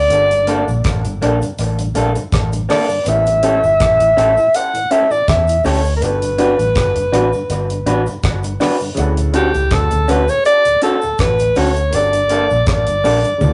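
A clear alto saxophone sings an up-front, pop-style melody with vibrato from the start, over a very quiet, intimate baby grand piano with audible action noise and a round, punchy, foam-muted electric bass, setting a sweet, smooth lovers rock reggae mood with a lightly swung feel. A dry 70s drum kit with a tight kick and rim clicks enters at 0.1 seconds alongside a distant cabasa, followed by a mellow tonewheel organ with key click and slow rotary speaker in the background, and slightly broken-up, lo-fi guitar stabs from 0.5 seconds, with dub echo on the drums, organ and guitar. The piano adds a fill between 7.5 and 9.0 seconds as the chords move from Gmadd9 through A7, Gmaj7 and Dmaj7, all captured in a rough rehearsal-room recording with moderate reverb, cut from a longer piece.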